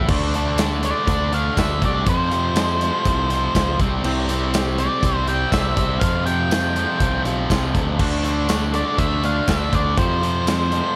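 Swaggering and driving, this classic rock excerpt sets an up-front, double-tracked overdriven guitar riff over a bright, direct picked bass and an acoustic drum kit with a punchy kick, a medium-tuned snare, crash, hi-hat and tambourine, its big-room sound rolled off at the top. A dark octave-fuzz lead guitar enters at 0.8 seconds, playing a high melody above chords that move from D5 through F5, C and Fsus2 and back. Light reverb and a small room ambience surround the parts until the cut at 11.0 seconds.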